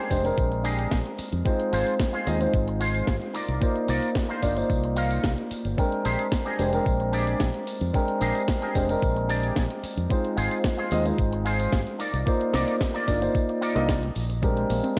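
A straight 4/4 groove at 111 BPM drives this sunny, feel-good nu-disco cut, taken from a longer piece in Bb mixolydian, where a thumpy, overdriven electronic kick and a layered house kit with a cracking, tape-warm snare and hi-hat sit over a punchy, bright fingered bass with an envelope filter, while a tambourine trails in the background. Up front, a dark, mellow baby grand piano comps through low-pass filtering, cassette grit and analog delay on chords moving from Bb13 to Ab6 to Cm11, as a clean, twangy picked guitar with an envelope filter and analog chorus plays a riff until 14.3 s. At 14.4 s a lush, warbling, detuned unison pluck slips in with sidechain-pumped arpeggios, all set in a moderate spring reverb with the character of a home cassette recording.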